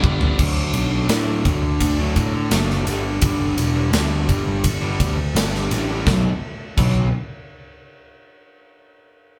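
An overdriven, round fuzz bass sits up front beside a big, punchy acoustic rock kit with bright cymbals, opening on a drum fill, while a compressed, distorted fuzz guitar carries the riff through a brooding, dark quiet-loud alternative rock passage in B minor at 84 BPM, moving from D to G and landing on B5 at 6.1 seconds, all in light reverb like a band playing live in one room.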